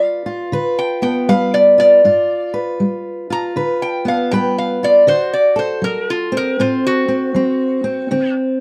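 A lap resonator guitar, played with a steel bar and fingerpicks, carries the melody up front with a bright, metallic, nasal slide tone, spanning F4 to Bb5 across this short excerpt cut from a longer piece. Beneath it, a fingerpicked steel-string acoustic guitar provides warm accompaniment from G2 to B4, sitting up front just behind the lead. The style is acoustic country blues in G mixolydian, moving at 79 BPM in 4/4 with a swung eighth-note feel that gives it a gritty, swaggering mood. The harmony rests on G7 before shifting to D7 at 5.1 seconds, with both guitars playing from the start until around 8.3 and 8.6 seconds. Close, detailed microphones and a light reverb keep the small duo sound intimate and present.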